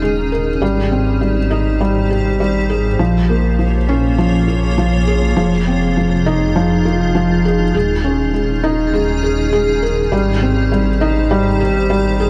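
Tender and luminous, this piano and strings electronica piece sets a felt-muted upright piano up front, its soft, intimate riff carrying audible action noise and a tape echo. Beneath it, a dark detuned saw bass rumbles with a deep, beating unison tone, while a granular cloud pad drifts in sustained chords that feel blurred, evolving and full-bodied through its built-in reverb. The three parts play together through the full 12.3 seconds over a light small-room ambience, moving from Eb7sus4 through Abmaj7, Bbm7 and Fm7 before Eb7sus4 returns and settles back onto Abmaj7.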